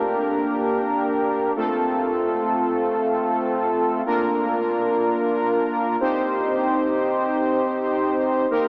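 A dreamy, reverb-soaked mix with a small-speaker quality sets a wistful, nostalgic pop mood, bathed in a cathedral reverb that lingers for about 5.7 seconds. Across its 8.7 seconds, a solo analog synth brass carries everything alone, ranging from A3 to C5 and sitting up front in the mix. Its sawtooth tone is fat and nasal yet mellow, with a fast attack, sustained notes, vibrato and a filter sweep. Chorus and analog delay thicken the synth's voice as it moves through Gm, F, Bb and Cm, and the tuning rests slightly low at A4 = 438 Hz. The passage is cut from a longer piece.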